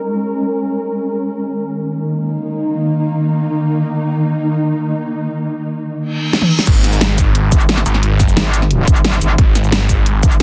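A growling, detuned sawtooth bass, distorted and up front, snarls through the drop at 6.7 seconds of this futuristic, aggressive dark technical drum and bass, pumping against a punchy, layered electronic kick. It follows a tense, swarming drone of nasal, granular sustained chords under a filter sweep with its own reverb, capped by a reverse cymbal and a dubstep drum kit fill at 6.3 seconds featuring a huge snare, toms, hi-hat, crash and cabasa. A metallic, chorused FM wobble bass joins at 7.5 seconds, all set in a lush hall reverb with a dense, heavily limited modern master.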